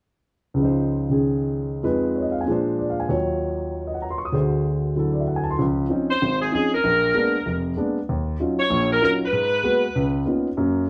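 A swinging 4/4 pulse drives this joyful jazz excerpt, where an intimate grand piano with audible action noise carries the chords from 0.5 seconds through rich extended harmonies before a bright, vintage-toned saxophone section, tight and playing with vibrato and a soft attack, takes the melody at 6.1 seconds, both up front in a moderate studio reverb as the band plays live together.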